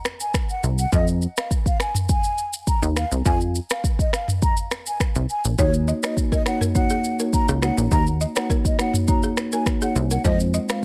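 A smooth, sultry afrobeats groove in a straight four, built on an up-front electronic drum kit with a deep kick, finger snaps, rim clicks, shaker and toms, and a punchy, funky analog bass with a fast plucky attack, carries an airy, hollow concert flute melody colored by vibrato and tape echo, while woody rosewood marimba and a dry, buzzing balafon riff join at 5.6 seconds in this studio-reverb-washed fragment of a longer piece.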